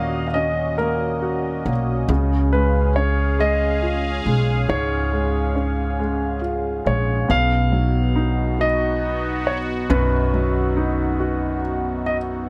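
An aching, melancholic pop ballad in a straight six-eight opens with everything at once: a concert grand carries the melody up front, warm, with deep bass, long sustain and a polished, present tone, while a clear baby grand supplies the accompaniment beneath it. Both pianos sound intimate, close enough that the action noise of the keys is audible, and the baby grand keeps a natural character. A bright, detuned sawtooth pad with a slow attack and long release holds sustained chords underneath, evolving and resonant with a filter swell and a chorus shimmer. An upright bass played pizzicato on steel strings sits forward in the mix, acoustic, woody, warm and thumpy. The harmony moves from Ebm7 to Db, then shifts to B at 7.3 seconds as a new section begins, all framed by a small room's ambience in this short cut from a longer piece.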